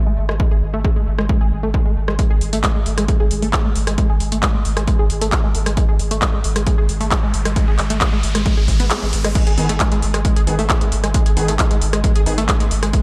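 A tight, detuned sawtooth synth riff with chorus, phaser and a diffuse delay opens this dark, intense slice of driving peak-time techno over a deep, overdriven sine sub bass, joined at once by a punchy layered kick and a drum kit of metallic hats, handclaps, rim clicks and crash cymbal, with the synth, bass, hats and cymbals pumping against the beat, until a riser from 6.8 s leads through a brief break into the drop at 9.4 s, where an aggressive, thick unison rave stab sits in the background, washed in reverb and ambient delay.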